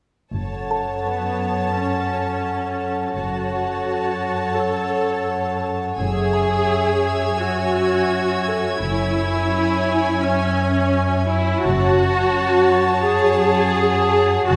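Uneasy and eerie, this cinematic suspense cue, cut from a longer piece, sets glassy, ethereal glass harmonica chords against bowed strings, with a close, up-front viola section carrying the accompaniment over a cello section and soft-attack double bass section holding a low bass, while a violin section plays a second line, a delicate, tinkling music box sits in the background, and a second high violin section adds rich texture between 6.0 and 11.2 seconds, all set in the reverberant space of a scoring stage.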